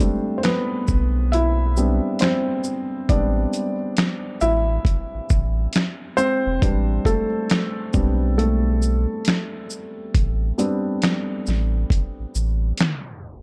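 A felt-muted upright piano and a dusty, sampler-style drum kit open this hazy, melancholic lo-fi hip hop excerpt together at a relaxed 68 BPM in 4/4, with a swung sixteenth-note feel in A minor. The piano, soft and mellow with audible action noise, plays its solo over a single Am11 chord, sitting intimately up front through a cassette-tape coloring and a low-pass filter. The drums bring finger snaps, hi-hat, kick, shaker and a medium-tuned snare, their thumpy, gritty character pushed further by overdrive and compression. A deep, round sine sub bass enters at 0.9 s, sustained and up front, and drops out of the picture at 12.7 s. Light reverb and a dark, warm production keep the mood subdued, until a tape stop drags the sound to a halt from 12.8 s.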